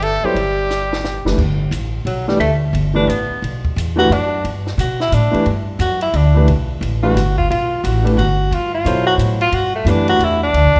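This hypnotic, spiritual modal jazz excerpt in a swung 3/4 opens with a brilliant, forceful trumpet phrase with light vibrato and scooped notes, over a clear tenor saxophone line, woody pizzicato upright bass and a compact cocktail drum kit. A warm concert grand piano with deep bass joins almost at once, voicing a Gmaj9 harmony. The trumpet drops out at 1.3 seconds, just as a drum fill that began at 0.7 seconds rounds off the opening. From 1.4 seconds the tenor saxophone takes over as soloist, its roomy tone carrying vibrato and scooped notes through to the end. Underneath, the steel-strung bass sits up front while the dry, natural kit offers dark cymbals, a high-tuned snare and a punchy kick at a modest level, all set in light reverb.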